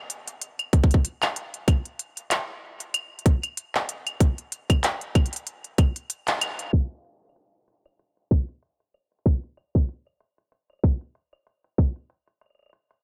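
A tight, tape-warm electronic kick sits up front in this melancholic, cerebral IDM excerpt, dropping out at 6.1 seconds just before a band accent. An organic electronic drum kit of claves, handclaps and crisp hi-hats runs the full length with a gentle swing on the sixteenths, its small-room character giving it a close, dry presence. The mix is low-pass filtered with little reverb, and a filter sweep runs through the second section from 6.7 seconds.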